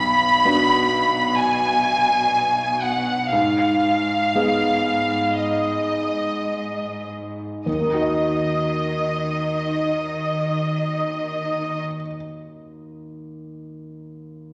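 A rich, focused violin section carries the melody up front, its bowed ensemble tone marked by vibrato as it sings high in its range. This is an emotional, cinematic film score for orchestra, full of longing and deeply moving, set in Eb harmonic minor at a slow 50-65 BPM in 4/4 with a rubato feel. The opening passage slows down, moving from B minor to Ab minor before settling on Eb minor as a new section arrives at 7.7 seconds. A clear, intimate grand piano supplies the accompaniment across a broad span from deep bass to the middle register, polished and present, with audible action noise. Beneath the melody, a smooth, lush cello section holds the bass with even, bowed vibrato, and the strings stop at 11.8 seconds while the piano plays alone until 14.5 seconds. The whole passage, cut from a longer piece, sits in a wet concert hall reverb.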